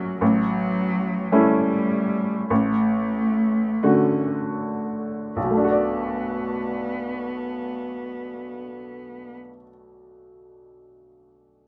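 Melancholic and full of longing, this short excerpt of neoclassical piano and strings moves in a slow, rubato 6/8 in B minor, drifting between roughly 38 and 56 beats per minute and slowing down through its first 5.4 seconds. A bright upright piano carries the accompaniment across the whole 11.6 seconds, its woody, brilliant tone sitting up front and spanning from deep in the bass up to the middle of the treble. A single muted cello plays a second line, bowed con sordino with vibrato, its veiled, dark voice staying in a narrow middle register until it ends at 9.3 seconds. The harmony passes from A7 to D over A, then settles on B minor seventh as the second section begins at 5.4 seconds. Light reverb surrounds a rough home-demo sound, giving the piece an intimate, unpolished quality.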